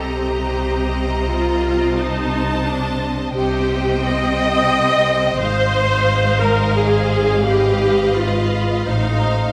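A lyrical, warm slow romantic movement for string orchestra opens with all five sections together: a rich, lush violin section sings the melody above a clear, slightly distant second violin line, while an up-front viola section carries the accompaniment. Cellos and double basses share the bass with focused, bowed vibrato, swaying in 3/4 with rubato and uneven beats. A wet scoring-stage reverb of 1.8 seconds surrounds the ensemble as the harmony moves from Cm7 through Fm7/Ab to F7/A across this 9.5-second excerpt.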